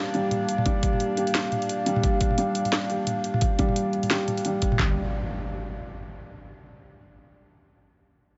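This half-time drum and bass excerpt moves at 174 BPM in 4/4, with a swung sixteenth feel and a dark, spacious mood centred on G minor. Two layered, overdriven electronic drum kits sit up front, one carrying bright hats, a cracking snare and toms, the other bringing handclaps, toms and a knocking kick that enters at 0.7 seconds. Beneath them, a deep, nasal analog pad of detuned square and sawtooth tones with a sub octave holds sustained chords through chorus and sidechain pumping, while a felt-muted upright piano plays soft, boxy arpeggios roughened by 12-bit sampler grit, a low-pass filter and digital delay. An eerie, metallic FM drone hovers in the background with chorus and its own reverb. At 4.8 seconds a growling, buzzy 808-style bass briefly surfaces far back in the mix, and an electronic impact lands up front at 4.9 seconds, all set in a light digital ambience with a muffled top end.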